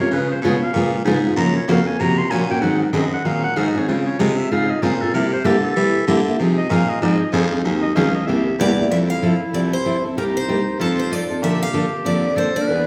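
Set in the wet, spacious reverb of a church or concert hall, this playful, swinging jazz manouche excerpt opens with a bright clarinet soloing with light vibrato and scooped notes over a boxy, up-front picked steel-string guitar with fresh-string squeak and a raspy, gritty baritone saxophone holding the bass, before a second, warm dreadnought guitar takes up the melody at 8.6 seconds, just ahead of the harmony shifting to a new key.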